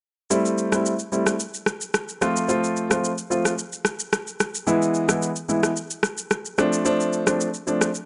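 Afrobeats at 110 BPM in A minor, this mellow, smooth excerpt pairs a warm, polished grand piano comping through Am7, F, E and Dm7 with short-sustained chords in a present, up-front mid register, against an electronic shaker and rim click that sit forward with a produced sheen, all in light small-room reverb with a softened top end, as a fragment cut from a longer piece that runs to about 8.1 seconds.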